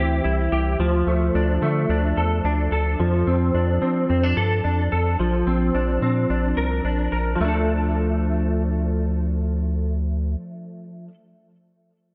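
A clean, hollow-bodied semi-hollow electric guitar opens this short dream pop fragment with fingered arpeggios, thickened by ensemble chorus and tape echo, over a round, deep analog bass with a nasal edge, both placed up front. The hazy, melancholic mood drifts through C, Dm, F6 and Bbadd9 before returning to Dm at 7.4 seconds, all set in a moderate recital hall reverb. The bass stops at 10.4 seconds and the guitar carries on briefly until 11.1 seconds.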